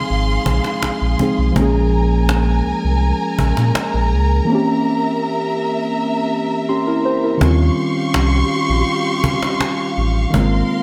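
Contemporary R&B with a longing, late-night mood, this short passage cut from a longer piece moves at an unhurried, straight 4/4 pulse. Muted, felt-like synth keys carry the accompaniment up front, their soft, dark tone touched with chorus and a noise layer. Beside them, a lush bowed string section holds sustained chords with expressive vibrato and a smooth top. Underneath, a deep sub bass doubled at the octave sits full and forward, and a woody cajon with faint snares adds an acoustic, live-room feel. The cajon drops out at 4.5 seconds, the keys play a short fill at 6.3 seconds, and the percussion returns as a new section begins at 7.4 seconds. Light reverb and studio ambience frame a bright, 1980s-style digital production.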